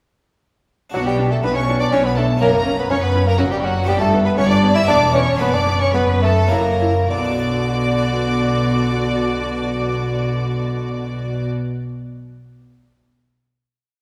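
Dramatic and stormy, this brief baroque-style concerto movement in B minor and 3/4 moves at 99-124 BPM and slows from 3.1 to 7.1 seconds, as rich bowed violins carry the melody with a second violin line and a clear, softly attacked bassoon doubling the tune at the octave, over repeated notes and sustained chords from smooth violas, a very quiet airy harpsichord rolling chords until 11.9 seconds, and a bass of warm cellos doubled by dark, woody double basses, all set back in a wet concert hall before settling on a final B minor chord at 7.1 seconds.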